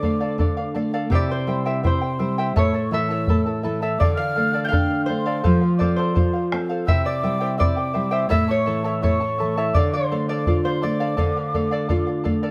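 This wistful, melancholic Andean folk piece opens with the full ensemble at once: a fingerpicked concert harp carries the ringing melody while a breathy, hollow cane quena traces a second line above it, its tongued notes touched with vibrato and a tape echo. Alongside them, a charango adds a shimmering fingerpicked accompaniment on double strings, some doubled at the octave, and a nylon-string guitar sits up front with a full-bodied, deep classical tone. A round bombo, heard in a small room, keeps the unhurried 83 BPM pulse in straight 2/4. The harmony stays in D minor, moving through Dm, C, A and F before returning to Dm at 9.8 seconds. Moderate studio reverb gives the group a shared space, and the quena drops out at 12.2 seconds, just before this section, cut from a longer piece, ends at 12.5 seconds.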